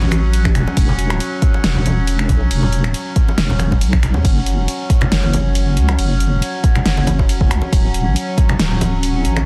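This brooding, cavernous deep dubstep excerpt in F# minor opens with a resonant sawtooth drone whose overtones shift under chorus and phaser, sustaining chords alongside a dark, detuned wobble bass that sits up front, ringing congas in the background, and a small-room deep house kit of finger snaps, hi-hat, ride and a fat, softly clipped snare. At 138 BPM in a swung half-time feel, a tape-warm electronic kick joins at 0.5 seconds and stays prominent until 8.5 seconds, as the chords move from A through E5 and F#5 to D. The dense, heavily limited master is dry, with a bed of vinyl crackle.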